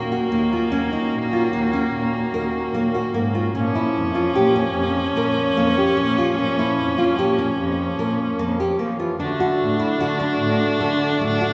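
This short cut from a longer piece sits in a church or concert hall, with a wet recital hall reverb lingering for 1.8 seconds and lossy compression artefacts clinging to the sound. It is contemporary chamber music in 7/4 at 149 BPM with a straight feel, pensive yet restless, and tuned slightly low at A4 = 439 Hz. A single bowed cello carries the bass with a dark, smooth-topped tone, soft attacks, expressive vibrato and portamento, while a solo viola, bright, focused and up front, plays a second line with its own vibrato. A fingerpicked nylon-string guitar spins warm, deep classical arpeggios, and a hand-pumped harmonium holds sustained chords with a reedy, nasal, breathing voice set forward in the middle of the mix. The harmony moves from Ebm7 at the start to Bbm at 3.6 seconds and then to D at 9.2 seconds, with all four instruments playing together throughout.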